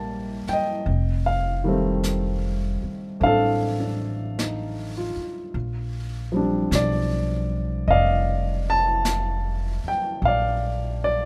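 A warm baby grand piano and woody, thumpy upright bass open this tender, late-night jazz ballad excerpt in Bb major at a slow 51 BPM with a swung 4/4 feel, joined at 0.5 seconds by an airy, polished brush kit of snare and hi-hat, moving through Eb69, F7 and Bb6 under light reverb.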